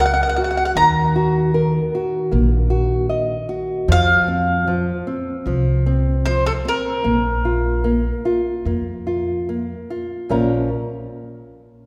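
Fado-style ballad, passionate and mournful, at 76 BPM in a rubato 4/4, where an up-front mandolin with a mellow, round double-string tone carries the melody until 9.5 s over fingerpicked nylon-string guitar with fresh strings and woody pizzicato upright bass, all bathed in the long reverb of a church or concert hall, in a short section cut from a longer piece.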